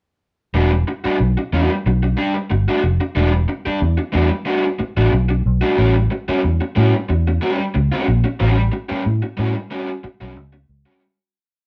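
A driving, sly funk groove in E dorian at 92 BPM begins at 0.5 seconds: a raw, overdriven garage guitar plays sixteenth-note rhythm with muted scratches, and a dark, foam-muted fingered bass plays a punchy, syncopated riff anchored on the downbeat, laced with ghost notes and chromatic approach notes. The harmony moves from Em9 to A13 at 5.8 seconds, with both parts up front in a moderate studio reverb that gives the feel of a band playing live in one room. A fade-out begins at 8.4 seconds.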